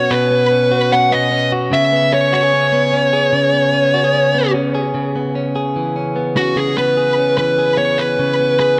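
Restless and wistful, this short indie pop excerpt in C# minor moves at 148 BPM in a straight 4/4, with a dark, fuzz-drenched lead guitar carrying the melody between F#4 and F#5 over bright, direct-recorded clean electric guitar arpeggios, both picked, compressed and up front with analog delay, all bathed in a wet spring reverb that makes the mix echo-heavy as the chords pass from Bsus2 to C#7(no3) and settle on C#m7 at 5.0 seconds.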